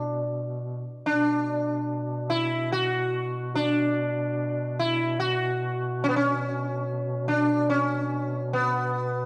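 Rubato in a loose triple metre, this solemn, longing Caucasian folk lament unfolds freely across a 9.3-second excerpt cut from a longer piece. An acoustic sitar carries the melody up front, its plectrum-plucked tone bright, buzzing and shimmering with sympathetic strings, while a mellow duduk sustains a low drone with folk-style vibrato. A moderate recital-hall reverb and a dark production set the pair in a shadowed, spacious room.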